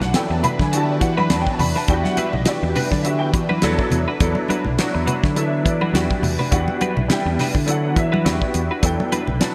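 Electric jazz fusion in E minor at 104 BPM, this slick, intense fragment of a longer piece rides a 16th-note swing feel over a single Em9 chord. A damped 70s drum kit sits up front with a fat snare and tight kick, its hi-hat, kick and snare treated with gated reverb, and a drum fill arrives at 5.8 seconds. A fingered electric bass, direct and amped, anchors the low end alongside thick-skinned, medium-tuned congas with a vintage, band-limited tone tucked into the background. A warm grand piano carries the accompaniment up front through an ensemble chorus, while a dark, clean, picked semi-hollow guitar adds compressed stabs with analog chorus further back. Beneath them, a swirling, detuned sawtooth pad with a soft attack and long release holds sustained chords through phaser and chorus, all set in a lush hall and a bright 1980s-style digital production.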